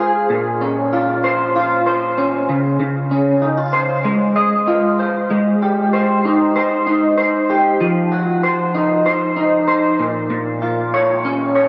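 A bright, twangy electric guitar through a small old amp plays alone up front in this sunny, nostalgic indie pop excerpt at 96 BPM in Ab major, its slightly broken-up picked tone wrapped in ensemble chorus, warbly pitch drift and delay, drifting through chords like Bbmadd9, Dbmaj7 and Abmaj7 before settling on Bbm, all soaked in a huge ambient reverb and a dreamy cassette-tape haze.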